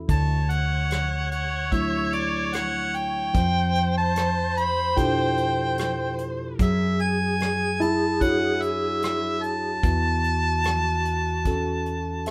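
A mellow harmonica carries the melody up front in this nostalgic, hopeful acoustic folk-pop ballad, its scooped notes and light vibrato giving the line a punchy, vintage pop character. Beneath it, a barky tine electric piano plays bright, clean accompaniment through a combo amp, while a felt-muted upright piano adds soft, intimate arpeggios in the background, its action noise audible until it drops out at 10.1 seconds. A single bowed viola adds a rich, focused second line with vibrato from a distant position, and a fretless electric bass supplies a dark, round, amped low end. A soft brush drum kit with a tight kick, rim click and hi-hat keeps a straight 4/4 at 74 BPM in a natural studio room. The harmony moves from Dmaj9 through Fmaj9#11 and Dmaj9/F# to A6/E under light reverb in this short cut from a longer piece.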